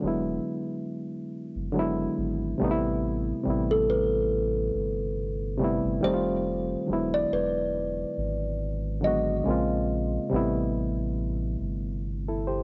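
Heard as a home cassette recording with light reverb and a studio ambience, this nostalgic, hazy lo-fi hip hop piece is cut from a longer work and moves with a gentle swing. A barky, reedy electric piano carries the chords through cassette tape and a low-pass filter, over a deep, round dub sub bass that sits up front throughout. At 3.7 seconds a woody, hollow kalimba takes the melody with a ringing thumbnail pluck, also filtered and taped, until it stops at 9.7 seconds.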